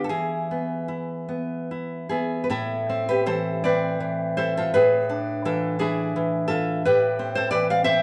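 A fingerpicked nylon-string guitar opens alone on an E chord and carries this intimate, melancholic romantic fragment, cut from a longer solo classical piece, in 6/8 with free rubato. Its warm, up-front tone ranges from low A2 to F5 as the harmony settles onto A minor at 2.5 seconds, passes through E7 over an A bass, and returns to A minor at 6.8 seconds. A moderate recital-hall reverb gives the instrument a natural, gently ringing space.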